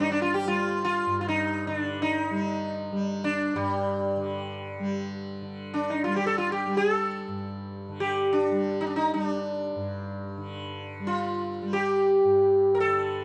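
A dry, close studio recording in a 1970s style, set in a modest booth, captures this introspective and solemn passage of Hindustani classical music in free time, cut from a longer piece. Up front, a round, shimmering sitar carries the melody between G3 and Bb4, its plectrum-plucked notes buzzing against sympathetic strings. Beneath it, a bright, softly plucked tanpura sustains a quieter drone from G2 to G3, and both parts sound throughout the 13.2 seconds.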